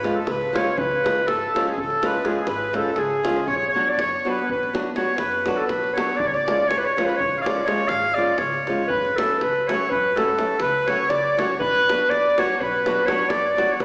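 Heard through a small speaker, this fiery, restless Balkan wedding-band fragment sits in the lush reverb of a church or concert hall, driving along in a straight 11/8 at 243 BPM in eighths, in C# phrygian dominant. A distant, roomy clarinet in classical style leads the melody up front, joined by a clear, reedy accordion on a second line, while a flamenco guitar fingerpicks the accompaniment with audible finger squeak. Beneath them a woody, thumpy pizzicato upright bass and a deep davul hold the low end as the harmony moves from C# through Bm and back, shifting to F#m at 8.9 seconds.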